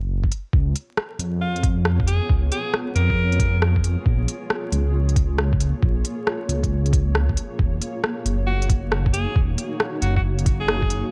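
Heavily swung sixteenths over a steady four-beat pulse give this wistful, rainy slice of future garage its shuffling gait, cut from a longer piece. A muffled, pitched-down electronic kick with a tape-warmed thump anchors the groove, while an up-front produced kit adds smooth hi-hats and rim clicks. Beneath it, a deep, rumbling detuned saw bass beats and growls with saturation, pumping against the kick, and a granular cloud pad blurs soft, slowly evolving chords through its own reverb, moving from Db7 to Bbm7 and then Ebm7. An edgy alto saxophone cuts in with punchy, scooped pop-style phrases from 1.4 to 3.6 seconds, then returns at 8.5 seconds, roughened by vintage 12-bit sampler grit and trailed by delay. A bed of vinyl crackle hangs over the whole mix, deepening its late-night, rain-streaked atmosphere.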